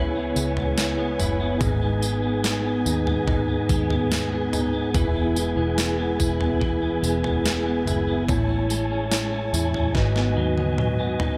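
Dream pop with a haunting, melancholic mood, this short excerpt is cut from a longer piece and moves in a straight, unhurried four. A percussive tonewheel organ holds sustained chords up front, its soft, flute-like tone carrying key click and third-harmonic percussion through a fast rotary speaker. An electric guitar at the edge of break-up plays picked arpeggios, slightly broken-up and compressed, thickened by ensemble chorus and tape echo. Beneath them, a vintage muted picked electric bass gives a dark, round, punchy, foam-muted foundation, while a crisp 8-bit digital drum machine enters at 0.4 seconds with a thumpy kick, a medium-tuned snare, tambourine and toms, overdriven and re-recorded in a large room. The harmony drifts from C#m7 through G#m and E to Amaj7, settling on G#m7 as the drums play a fill from 9.9 seconds, all under a light reverb.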